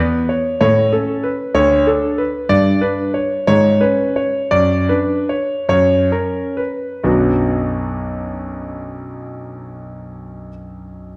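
A clear concert grand piano opens alone on this short excerpt, a baroque-style suite movement in B minor cut from a longer piece, its introspective, flowing line unfolding in 6/8 with free rubato at roughly 42 to 64 dotted-quarter beats per minute. The instrument sounds worn yet natural, with deep bass reaching down to B1 and short sustain, set up front against a wet recital hall reverb that lingers for about 1.6 seconds. After an opening A chord, the pace gradually slows from 1.6 seconds through a harmonic path that moves from D5 and G to C#5/G#, then Bm/F# and F#, easing toward the dominant. At 7.0 seconds a new section begins, settling onto B minor and carrying the movement on until the clip ends at 11.2 seconds. The production is dark and warm overall, slightly tuned below standard pitch at A4 = 438 Hz, which lends the recital a muted, intimate glow.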